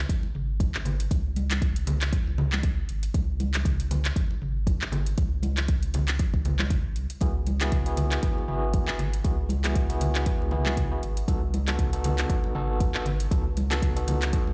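A deep, layered electronic kick sits up front in this driving, spiritual afro house excerpt, carrying a gently swung sixteenth-note feel from the first moments. Around it, an overdriven afro-pop kit adds handclaps, toms and metallic hats, while bright, band-limited congas with a vintage acoustic character fill out the groove. A round, sine-like sub bass with a fast attack and long sustain pumps against the kick from the start. At 7.2 seconds a gritty, barky tine electric piano enters with stabs, its combo-amp tone shimmering with medium tremolo, pumping with the kick and trailing dub echo, as the harmony moves from a bare C#5 to Eadd9 and then to B7 at 11.3 seconds. The whole track sounds as if played on a big sound system in a bare room, wrapped in a large studio reverb.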